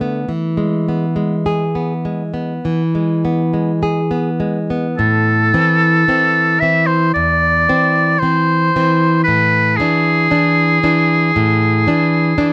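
Closely miked and nearly dry, this fragment of a romantic duo in A minor unfolds at a slow, rubato 50-60 BPM in an elegiac, solemn mood: a full-bodied, fingerpicked nylon-string guitar with fresh strings and audible finger squeak plays alone until a clear, up-front oboe with light vibrato enters at 5.0 seconds to carry the melody over harmony moving from E to Am and E7/A.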